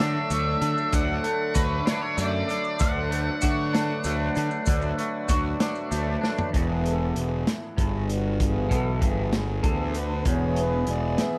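Hazy and kaleidoscopic, this echo-heavy psychedelic rock piece in 6/8 cut from a longer work sets a dark octave-fuzz lead guitar melody over a twangy, phased and double-tracked clean electric guitar riff, an up-front overdriven picked fuzz bass, a gritty, saturated breakbeat drum kit with a tight kick and rolled-off top, grainy maracas in the background and reedy, breathing pedal harmonium chords, until the lead guitar drops out at 5.9 seconds and a drum fill leads into a mellow harmonium solo from 6.5 seconds as the chord moves from D to E.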